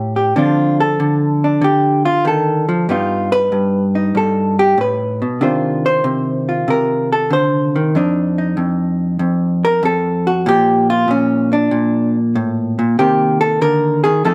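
Relaxed and playful, this solo jazz excerpt from a longer piece features a vintage hollow-body electric guitar, dark, clean, compressed and picked, sitting up front through a swung 4/4 and passing over chords from Dm7 and G7b13 to F13 and Cm7 within a moderate stone-room reverb.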